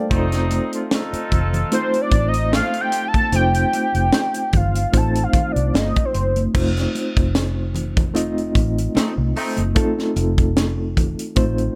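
A reedy electric piano with fast tremolo opens this bittersweet, cinematic fragment of lush 1970s-style soul. It is joined almost at once by mellow, vintage horn stabs, a dark, round muted electric bass, a tight funk drum kit with a high-tuned snare and a natural small-room sound, and bright, thin-skinned congas in the background. At 1.7 s a fat, detuned sawtooth analog lead with chorus, vibrato and portamento carries the melody up front until 6.4 s, while a light 16th-note swing keeps the groove loose and the horns return briefly at 9.0 s.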